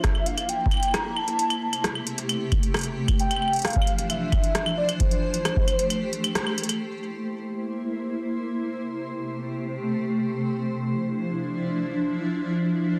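Eerie and glitchy, this IDM fragment is cut from a longer piece and moves at 133 BPM in a straight 4/4, centred on D minor. A warbling, nostalgic lead built from detuned triangle and sawtooth tones carries the melody, its dark colour thickened by ensemble chorus, vibrato and digital delay. Beneath it, a granular cloud pad holds blurred, full-bodied sustained chords with a slow attack, long release and vintage 12-bit sampler grit, cycling through C7, Am7/C, Dm9 and Am7. Up front, an overdriven electronic kick with a deep analog punch drives the groove alongside a booming analog drum machine of claves, metallic hi-hats and rim clicks, both re-recorded in a small room, with the drum machine's parts muffled by low-pass filtering. The kick stops at 5.7 seconds, and a short break follows with a band accent at 6.4 seconds and a drum fill at 6.6 seconds. From 6.8 seconds the evolving pad carries on alone. 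A moderate digital room reverb surrounds the parts, and the dense, heavily limited master keeps the sound modern.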